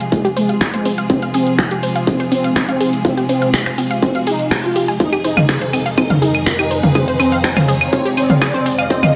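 A bright, intense studio string section opens this driving, dramatic melodic techno excerpt, bowing sustained, vibrato-laden chords through a low-pass filter with sidechain pumping. It arrives together with an up-front techno kit of claves, finger snaps, warm hi-hats and toms, re-recorded in a large room. Within a fraction of a second, a distorted, layered electronic kick enters beside a juicy, resonant polysynth melody thickened with chorus and analog delay. A punchy unison pluck joins at the same moment, spinning warbling, detuned sawtooth arpeggios, and both synths carry sidechain pumping. The passage works as a build-up, with filter sweeps running across the polysynth and the arpeggio, an electronic riser sitting in the background from 1.5 seconds, and a chord change at 5.0 seconds. Light reverb frames a dry, gritty hardware sound with a cassette-tape grain.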